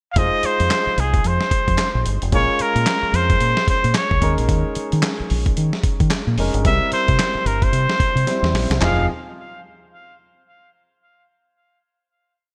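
A muted trumpet opens with a pickup at 0.1 seconds, its nasal, breathy tone carrying a motif-based pop melody with light vibrato and scooped notes over a confident, punchy new jack swing groove in F minor at 111 BPM. A gritty, sampler-style drum kit with gated reverb hammers out a hard-swung drum-machine beat, its snare layered with handclaps beside a thumpy kick, while a dark, round fingered bass bounces through a swung synth-funk line with muted ghost notes and a clear grand piano holds polished chords with audible action noise. The chords move from Fm7 through Bbm7, Eb7sus4 and C7, a drum fill at 8.3 seconds leads into a final Fm7 chord at 8.8 seconds, and the whole piece carries a bright 1980s-style digital sheen with light reverb.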